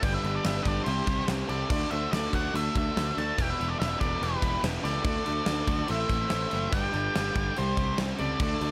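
A dark octave-fuzz lead guitar carries the melody over a quieter second fuzz line in this gritty, driving classic rock excerpt at 143 BPM, backed by an up-front gated 80s drum kit with a fat snare, punchy kick and bright cymbals, a round overdriven picked bass, three riff guitars (a very quiet double-tracked fuzz guitar, plus a lo-fi garage guitar and a tight distorted one sitting in the background), a very quiet polished grand piano, and a barely audible thick tonewheel organ through a rotary speaker, all in studio reverb.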